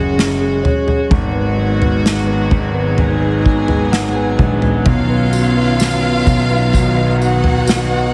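This tender, heartfelt pop ballad excerpt moves at a slow 64 BPM in a straight 4/4, tuned to A4 = 437 Hz and drifting from F#sus2 to G#m7 and then Badd9. A mellow, clean tine electric piano plays the accompaniment, adding a fill at 3.5 seconds, over a floating, sul tasto string section, deep concert grand piano bass and a punchy, airy acoustic drum kit played with bundle sticks. A lush violin section with expressive vibrato enters at 4.9 seconds as a second line, a jingly tambourine joins at 5.3 seconds, and the whole is set in light small-room reverb with a heavily compressed, radio-like sound.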